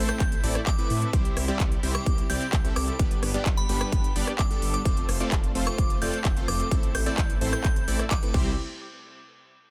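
Festival progressive house at 129 BPM in a straight 4/4, this uplifting, euphoric drop is cut from a longer piece and runs through a progression of Am, C, G and F before the music falls away at 8.6 s. A punchy, layered electronic kick sits up front, while a big-room dance kit adds crash cymbal, handclaps, rim clicks and crisp hi-hats with a tape-warm edge and a softly clipped snare. Underneath, a thick, detuned saw bass with chorus pumps under sidechain compression, and a unison supersaw stab plays the riff with a fast filter pluck, sidechain pumping, cassette-tape colour and tape echo. High above, a glassy, crystalline FM bell carries the melody with a long, decaying release, chorus and tape echo. Far back in the mix, a very quiet, distant symphonic string section holds biting sustained chords with light vibrato, and the whole is dry, dense and heavily limited in a modern master.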